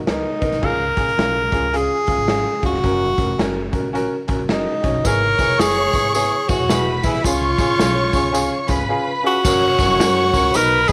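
A breathy tenor saxophone carries the melody up front from the opening moment, its clear, close-miked tone bending into scooped notes in a jazz style, while a woody pizzicato upright bass sits low underneath. An upright piano and a raw garage drum kit join almost at once, the piano giving natural accompaniment and the kit adding a punchy kick, a medium-tuned snare, hi-hat and crash with a rolled-off top. This uptempo 1960s-style soul excerpt moves at 109 BPM in 4/4 with a swung eighth-note feel in F# major, and the mood is uplifting and joyful. At 5.0 seconds a lush bowed violin section enters with an expressive, vibrato-rich second line above the saxophone, and a jingly tambourine arrives with it. The harmony moves from Bmaj7 through C#, F#, E and back to C#, then settles on F# as a new section begins at 9.4 seconds. A light reverb and small room ambience frame the ensemble.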